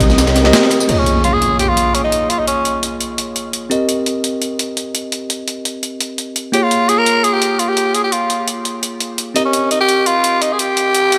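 A straight 4/4 liquid drum and bass groove from a gritty, compressed sampler-style breakbeat kit carries this melancholic, dreamy excerpt. A dark, saturated second kit of ride and snare sits in the background until 0.9 seconds, and a rumbling detuned saw bass sounds only at the start. Up front, a bell-like tine electric piano with digital delay plays Cm7 and Bbm7 chords, while a raspy, vibrato-laden tenor saxophone sings its melody through dub echo, returning at 6.5 seconds. Electronic impacts and noise sweeps mark the transitions, all set in a huge ambient reverb.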